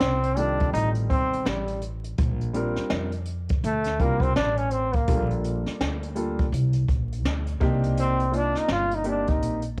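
A swung 83 BPM brushed groove of punchy kick, high-tuned snare and hi-hat with a cassette-tape tint drives this relaxed, warm jazz-hop excerpt in Bb major from the very start. Alongside it from the first beat, a thumpy pizzicato gut-string upright bass anchors the low end and a bright, forceful trombone solos with vibrato and its own cassette-tape colour over F9, Bb6, Gm9/Bb and Cm9. An intimate vintage upright piano with audible action noise joins at 0.4 s, all set in a small, lightly reverberant room with vinyl crackle and a homemade cassette character.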